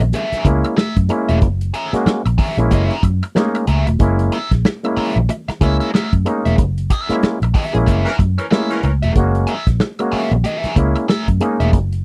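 A strutting 93 BPM funk groove in 4/4 with a 60% sixteenth-note swing sits on an F#9 chord in F# mixolydian, driven by a dark, tight soul drum kit and a round, foam-muted fingered electric bass up front, while a stringy overdriven clav stabs through auto-wah, a bright, biting guitar adds wah-soaked accompaniment, quiet high-tuned congas played with soft hands sit underneath, and during a band accent from 6.6 to 9.2 seconds a distant, roomy horn section slips in a brief second line from 8.1 to 8.9 seconds, all captured in a dry, close 1970s-style studio sound cut from a longer piece.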